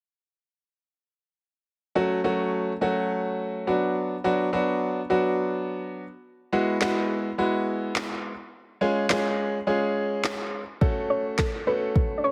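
A bright, up-front grand piano with audible action noise carries the chords from 2.0 seconds in this driving, confident dance-pop excerpt in F# minor at 105 BPM, moving through F#m, Bm, Eadd9 and C# with a sidechain pumping feel, joined at 6.8 seconds by a smooth, tape-tinged R&B kit of handclaps, soft kick and woody snare, before a soft, round pluck with chorus and delay takes the melody at 11.1 seconds, all set in light digital ambience.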